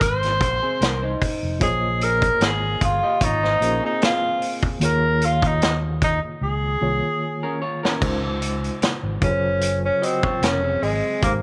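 A slow 75 BPM groove in 4/4 with a lightly swung sixteenth feel drives this smooth, lush 1970s-style soul excerpt, moving through Abmaj7, Bbm11 and Eb9sus4. A vintage drum kit sits up front with dark cymbals, a tight kick and gritty saturation. Beneath it are a punchy fingered electric bass, a reedy, worn electric piano with fast tremolo, and a dark, slightly broken-up picked electric guitar riff entering at 0.6 s. The warm tenor saxophone carries the melody with light vibrato and slapback echo, and after a drum fill from 6.4 s it takes a solo at 8.0 s over Dbmaj9 and Gbmaj9#11, set in light reverb and studio ambience.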